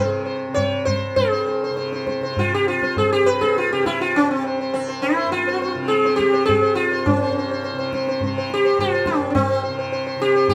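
A plectrum-plucked sitar sits up front in this serene, devotional Hindustani classical fragment, its buzzing tone and sympathetic strings giving the melody a shimmering halo as it moves between C4 and Db5. Beneath it, a softly plucked tanpura holds a low drone from C2 to C3, its own buzz and shimmer adding a warm bed under the lead. A low-tuned tabla with a short ring and a small-room character joins at 0.6 seconds, sitting well back in the balance. The music runs in 5/4 at 103 BPM with a straight feel, tuned to A4 = 445 Hz, and it gradually speeds up over its course, moving from a brief opening into a longer second passage at 1.2 seconds. The trio plays live together in a stone room whose moderate reverb lends an airy, devotional resonance to the whole performance.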